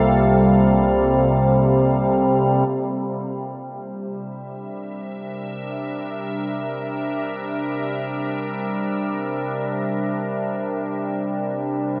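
A weightless, serene ambient excerpt in free time and C mixolydian opens with an evolving wavetable pad holding sustained chords up front, its vintage sine tone morphing and warbling through chorus and its own reverb. Beneath it, a very quiet, dry handpan played with the fingertips rings out meditative arpeggios, and a deep, round sub bass sits in the background on C. The handpan stops at 2.9 seconds and the bass shortly before, as the harmony moves from Gm7/C to C7 and the pad fades in from 2.7 seconds, carrying the dreamy, cathedral-soaked mix alone until the cut.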